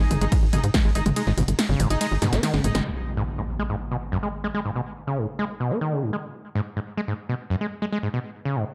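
Driving peak-time techno in a hypnotic, intense mood, this excerpt opens on a drop where a squelchy, overdriven acid bass riff, a tight sequencer bass and edgy sync-sweep polysynth stabs all pump under sidechain beside a punchy analog drum machine of filtered hats, ride, snare and toms, with an electronic kick that drops out by 1.2 s before a drum fill and band accent give way at 2.9 s to an impact while the gritty acid bass carries on through a filter sweep, all set in a dark production with moderate plate reverb.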